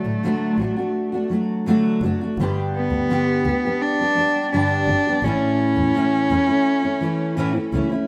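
A bowed cello carries the melody up front, its focused tone shaded with vibrato and a touch of digital delay, in this heartfelt, carefree acoustic pop passage at 84 BPM in D major. Beneath it, a double-tracked, fingerpicked dreadnought guitar supplies full-bodied accompaniment, while a single bowed double bass plays sul tasto with a soft attack and a pure, floating sound. The harmony moves from D to G to A under light reverb and studio ambience in a rough home-demo mix, and the moment is cut from a longer piece.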